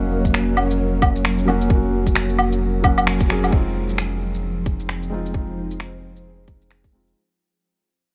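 Future garage at 132 BPM in 4/4, with a 60% swing on the sixteenths and a rainy, wistful mood in F phrygian, cut from a longer piece. A felt-muted upright piano plays soft, intimate accompaniment roughed up by vintage 12-bit sampler grit, a low-pass filter, tape echo and sidechain pumping. Behind it, an ethereal, airy pad holds dark, detuned sustained chords with slow attack and long release, shimmering through ensemble chorus, its built-in reverb and its own sidechain pumping, while a deep, round dub sub bass sits up front on F. A tight electronic kick enters at 0.2 seconds, joined at 0.3 seconds by a forward shaker, finger snaps and woodblock, both kits set in a small room ambience. The harmony moves from Gb over F to Fm7 at 3.5 seconds, just after a band accent at 3.1 seconds, and the whole passage then fades out to its end at 7.2 seconds over light reverb, digital ambience and vinyl crackle.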